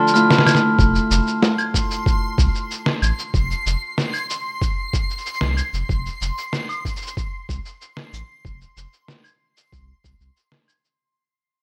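Folktronica in a delicate, pastoral mood, this excerpt opens with a dark, bell-like glockenspiel line and a distant, reedy string quartet over fingerpicked Celtic harp arpeggios soaked in tape echo, joined at 0.1 seconds by a fat, tape-warm snare with shaker and claves, before a round sine sub bass and a thumpy, muffled kick take hold from 0.8 seconds beneath a reversed, granular texture that glimmers high above as the whole passage fades out.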